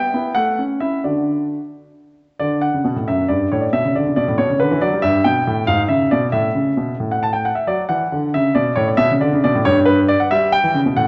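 In a straight 6/8, this elegant and graceful classical-period piano sonatina excerpt features a solo grand piano, polished, present and up front with a warm tone, set in a wet recital-hall reverb with a softly rolled-off top end, its harmony moving from A and D through F#m, Bm and G69 to a colourful E13b9/G#, with brief chordless moments before closing on Em/G.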